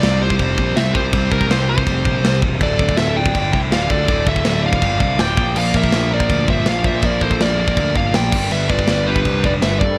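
A dark, smooth overdriven lead guitar sits up front with the melody, trailed by delay, while a high-gain lead guitar with delay traces a second line in the background of this relentless, heavy metal excerpt in D minor at 162 BPM. A tight, saturated drum kit with gated reverb drives the groove with china, crash, kick and snare, over a growly fuzz bass and a scooped high-gain guitar riff, and a compressed distorted guitar adds a second riff from 5.6 s. The chords move from C5 through Dm and Bb to G, with a bright 1980s-style digital production in a small room.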